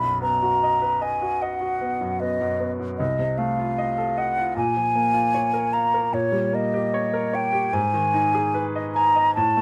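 A silver concert flute leads this short romantic classical passage, its hollow, airy tone sitting up front with gentle vibrato and clearly tongued notes as it carries a solemn, yearning melody across its upper register. Beneath it, a baby grand piano plays the accompaniment with a bright, brilliant sound and long sustain, its range reaching down to deep bass notes and up to meet the flute. Both instruments play together from the opening moment to the cut at 9.6 seconds, the flute sitting a little louder in the balance. The tempo is a slow 76 BPM in 4/4, but the rubato phrasing lets the pulse breathe and stretch. The harmony moves from B through F7/C, Bbm and Eb7/Bb before settling on Abm, giving the passage a darkening, searching quality. Close, detailed microphones and a light reverb keep the sound intimate, natural and clear, with the instruments tuned to A4 = 439 Hz.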